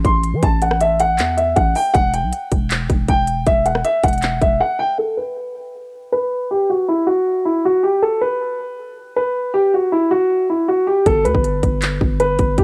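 This wistful, dreamy trap excerpt in G major moves at 158 BPM in a half-time 4/4 feel. A warm grand piano carries the melody throughout, sitting up front with a low-pass filter and analog delay softening its tone. Underneath, an electronic trap kit with a hard-clipped kick, crisp hats, handclaps and rim clicks sits beside a growling, buzzy 808-style bass whose sine tone has a fast attack and a decaying tail. Both the drums and the bass drop away around 4.6 seconds, leaving the piano alone under a filter sweep over an unresolved stretch. They return at 11.1 seconds as the harmony settles onto G. The dry, close home-cassette sound gives the whole passage an intimate, lo-fi character, with the drums carrying an extra tape grit.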